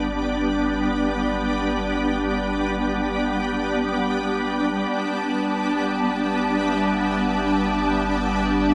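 Ambient music, serene and luminous, floating in free time in this short excerpt cut from a longer piece. A shimmering, ethereal pad sits up front from the opening, holding sustained chords that swell in slowly and ring on with a bright, detuned, granular sheen, an octave-up shimmer and chorus. Beneath it a deep, round sub bass holds a single low note, dark and steady. At 4.9 seconds a lush violin section enters in the background, its close, bowed ensemble tone expressive with vibrato and portamento. From 5.9 seconds an evolving analog drone joins, mellow and softly chorused, with a moving notch and pulse-width modulation colouring its slow, sustained tone. A wet shimmer reverb with a long tail bathes the whole texture in a glowing, spacious haze.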